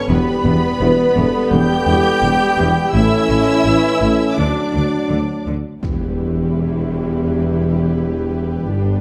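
Relentless and dramatic, this cinematic, epic orchestral film-score passage at 84 BPM in E dorian sets a lush symphonic violin melody above a second, expressive violin line and vibrato-rich violas, with clear trombones and mellow French horns holding sustained chords over a bass of dark, punchy tuba, focused cellos and smooth double basses, moving through Em, A and D before a huge, bright impact strikes at 5.8 seconds as the harmony returns to Em, all wrapped in a wet recital-hall reverb.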